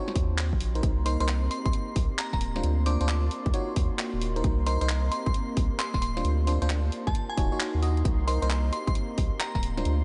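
A skippy two-step garage groove at 133 BPM swings its 16ths in 4/4, with a punchy, tape-warm electronic kick and a thick, saturated sub bass sitting up front while the drum kit adds a cracking snare, handclaps and hats. Over it, chorused FM electric piano stabs with a bell-like attack and a crystalline synth bell melody entering at 1.1 s ride delays, as a smooth sawtooth pad and a warbling, lo-fi tape-like pad pump in the background through Ebm7, Cm7 and Dm7 chords in C dorian. The late-night mix is dreamy and soaked in a moderate cathedral reverb, with a soft, rolled-off top end, in this excerpt from a longer piece.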